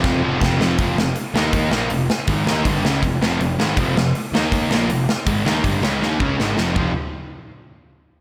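A driving, straight 4/4 pulse pushes this urgent, aggressive punk rock passage, cut from a longer piece. A big acoustic rock kit sits up front, with a punchy kick, a medium-tuned snare, hi-hat and toms, opening with a drum fill and closing with another from 6.0 to 6.8 seconds. Behind it, two sludgy, overdriven electric guitars play picked riffs, one of them carrying a slapback echo, while a growly fuzz bass with a bright, amped tone holds the low end. The riff cycles through F power chords, E-flat power chords and F minor before returning to F at 6.8 seconds, where the drums stop and the music shifts into a brief new section. A lush hall reverb and a touch of small-room ambience give the whole a big arena sound.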